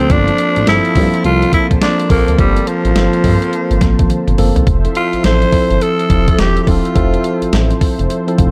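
The sound is dry and close, with a gritty alto saxophone and a crisp 8-bit drum machine up front in this bouncy, upbeat fragment of new jack swing R&B. The raspy sax carries the melody with pop-style vibrato, stopping at 7.5 seconds while the other parts carry on to the end. Beneath it, a mellow tine electric piano plays clean, direct accompaniment, and a brassy analog pad with chorus and a filter sweep holds sustained chords in the background. A smooth, nasal sawtooth synth bass glides between notes with portamento, its dark tone shaped by a moving notch. The sampler-style drums, with a thumpy kick, medium-tuned snare, hi-hat and toms under gated reverb, give a swung sixteenth-note feel and play a fill from 4.1 to 4.7 seconds, just before the harmony moves from Gm11 to Fmaj7 at 4.7 seconds.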